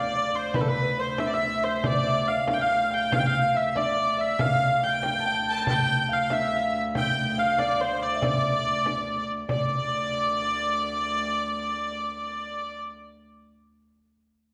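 A biting, nasal hurdy-gurdy carries the melody up front in this driving, mysterious medieval dance in D dorian, moving at 94 BPM in a straight 6/8, joined by a mellow, fingerpicked concert harp on a second line and a reedy viola da gamba holding a low D drone with light vibrato and gut-string tone. A small, bright frame drum enters at 0.3 seconds and drops out at 9.7 seconds, and the ringing harp lingers until 13.5 seconds. The cut from a longer piece sits in a reverberant church or concert hall.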